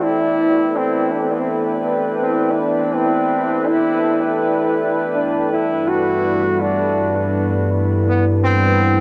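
A hazy cassette home recording bathed in moderate spring reverb frames this spacious ambient fragment, where a deep, warbling, dark pad with chorus and its own reverb sustains chords moving from Gadd9 to Gmaj9 alongside a clear, distant solo trombone in classical style, its melody touched by tape grain and dub echo across the full 9.0 seconds.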